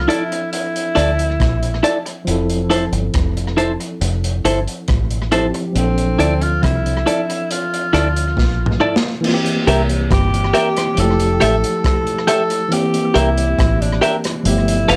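A home cassette recording with light reverb gives this short cut from a longer lovers rock reggae piece a smooth, sweet, lo-fi sheen. At 69 BPM in 4/4 with a straight feel in F major, a roomy tenor saxophone carries the melody with vibrato in a pop style, its tone colored by cassette tape and tape echo. A worn, slightly out-of-tune tine electric piano accompanies through its built-in speakers, mellow and lightly overdriven, with the same tape grain and echo. Up front, a deep dub fingered electric bass sits round, punchy and foam-muted, while a bright, twangy twelve-string electric guitar adds clean, compressed picked stabs with a cassette tint. A crunchy breakbeat kit of kick, rim click, snare, toms, hi-hat and dark crash cymbal sounds gritty and saturated with a rolled-off top, and its fill at 8.4 s leads into a new passage at 9.2 s. The harmony drifts from Bbmaj9#11 and Fmaj7 to C7, Fmaj9 and a closing G9.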